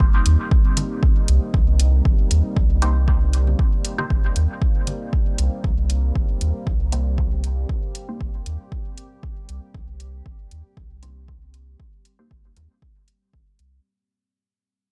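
A soft, round sub bass and a punchy, overdriven kick open this dub techno excerpt together, both sitting up front at 117 BPM in 4/4 with a light swing on the sixteenths. Metallic, overdriven hi-hats join almost at once, while a deep, moody pad holds a sustained Cm7 chord underneath, its slow attack, chorus and built-in reverb giving it a hazy glow. Layered electronic congas and bongos drift in the background with dub echo, dropping out at 7.0 seconds before briefly returning. From 2.8 seconds a muted, detuned chord stab adds short, plucky hits under a phaser and a filter sweep, also trailing dub echo. The pad, bass, stab and hand percussion all pump with sidechain compression, and the dry, saturated hardware sound keeps the meditative mood close and grainy as the whole passage fades out.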